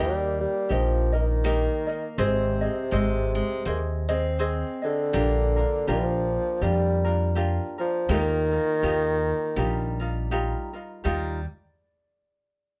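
A mellow, up-front bassoon carries a vibrato-touched, classical-style melody through plate reverb in this relaxed, sunny Hawaiian piece at 81 BPM in Eb major, sounding from the start alongside a bright, picked steel-string guitar second line, lightly fingerpicked ukulele and a woody, thumpy pizzicato upright bass, all moving through Eb, Ab, Bb6 and Ebadd9 with a swung eighth-note feel until the bassoon falls away at 10.3 seconds in this short cut from a longer piece.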